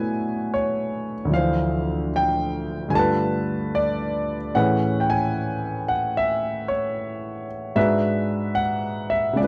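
A clear, up-front concert grand piano plays alone in this wistful, melancholic jazz fragment at a slow 74 BPM swing, moving from Bm9 through Dm7, G9 and Amaj9 to G#m7b5 across a range from deep bass D2 up to A5, with audible action noise and a natural, intimate tone in a dry, close 1970s-style studio sound touched by light reverb.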